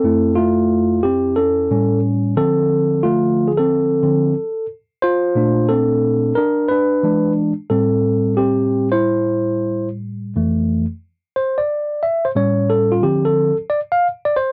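A dry, close recording with a 1970s studio character and a touch of light reverb frames a single mellow tine electric piano, placed up front and played clean through a combo amp. This is a solo hip hop piece in 4/4 with a swung sixteenth-note feel, and its mood is nocturnal and smoky. The electric piano covers a broad span from F2 to F5, moving through lush extended chords such as Fmaj7, Dm7, Bbmaj9 and Am7, with A7 and E7 adding tension along the way. At 10.4 seconds the piece shifts into a new section that returns to Fmaj7 and heads back toward Dm7. The short clip, cut from a longer piece, ends at 14.5 seconds.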